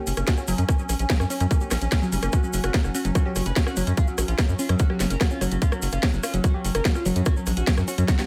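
A detuned, pulsing gated texture of sustained chorused chords opens this driving, alien psychedelic trance excerpt at 146 BPM in F# major, joined almost at once by a round, up-front analog bass, an overdriven electronic drum kit with cracking snare and bright hats, grainy maracas, a tight, up-front kick and a woody, warbling wave-folded pluck riff with dub echo in the background, before a gritty, screaming, guitar-like synth lead with phaser and vibrato takes the melody at 2.3 seconds and a drum fill lands at 8.1 seconds.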